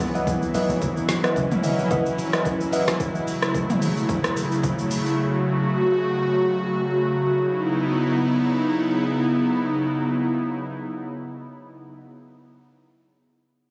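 A swung sixteenth-note groove in four drives this hypnotic, late-night amapiano fragment, cut from a longer piece. A punchy deep house drum kit sits up front with kick, woody snare, rim click, shaker, dark hi-hats and toms, sounding re-recorded in a small room, and it drops out at 5.2 seconds. Beneath it, a hollow, bouncy log drum bass gives only a brief FM thump at the very start, while soft-handed congas with a thick skin sit in the background until 3.0 seconds. A deep, mellow chord stab with a filter sweep, chorus and digital delay flickers above during the first three seconds of the opening drop, and a breathy, nasal pad with chorus and sidechain pumping holds sustained C#m11 and F#m7 chords up front for the full 12.0 seconds. The mix has the feel of a phone capture in the room, with light club reverb and compression.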